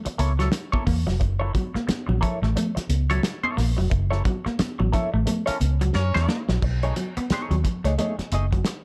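A dark, close-sounding funk excerpt with little reverb, gritty and playful at 89 BPM in 4/4 with a swung sixteenth feel over F#7#9, moving to B13 at 6.6 seconds. A cloth-damped, thuddy drum kit with a fat snare and saturated, rolled-off cymbals sits up front beside a round, foam-muted fingered bass, while two clean, compressed semi-hollow guitars split the work: one fingered accompaniment soaked in wah and lush chorus, and one picked riff low in its range. Bright, high-tuned congas ride in the background, a band accent runs from 3.9 to 6.6 seconds with a drum fill from 5.9 seconds, and a clear, vibrato-laden horn section pops in briefly from 5.5 to 6.5 seconds.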